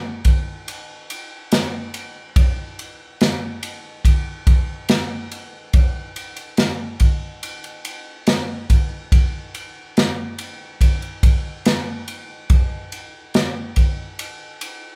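This pop excerpt moves at an unhurried 71 BPM in straight 4/4, with a longing, melancholic mood carried entirely by an acoustic country drum kit that plays from 0.2 to 14.8 seconds. Up front in the mix, the kit's punchy kick, medium-tuned snare and ride cymbal sound airy and polished. Light reverb gives it the feel of a band playing live together in one studio room.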